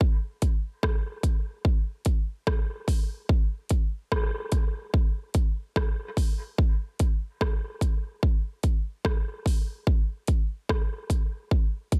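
A slow 73 BPM reggae groove in 4/4, swung at 58% on the sixteenths, runs through this 12-second cut from a longer piece, carried entirely by an electronic big-room dance drum kit of kick drum, hi-hat and rim click. The layered, produced kit sits up front, with a punchy kick and metallic hats, and a light reverb lends the meditative, hypnotic mood a touch of space.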